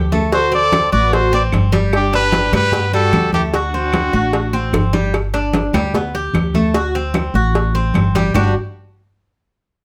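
Relaxed and danceable, this Cuban son and guajira passage moves at 150 BPM in G major, built on the mellow, metallic arpeggios of a Cuban tres and a dark, thumpy pizzicato upright bass up front. Ringing low-tuned congas, tight high-tuned cowbell and bongos, and woody claves in the background fill out the groove in a moderate studio reverb. A clear trumpet with vibrato carries the melody from 0.3 to 4.7 seconds, joined by a rich, bowed chamber violin section playing a second line in the background, before a brief drum fill leads into a second section where the tres, bass and percussion continue over G and D7.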